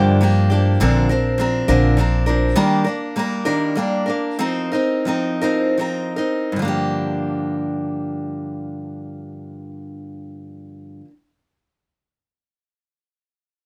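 Melancholic and wistful, this acoustic folk excerpt in G minor moves in a slow 6/8 at 49-68 BPM, counted in dotted quarters, with a bright, up-front picked steel-string guitar carrying the accompaniment through chords such as Gm7, Bbadd9, Ebmaj7 and F7sus4. A woody, dark pizzicato upright bass supports it only until 2.5 seconds, after which the guitar continues alone. The tempo slows between 2.6 and 6.6 seconds before a second section returns to Gm7, all set in a light reverb.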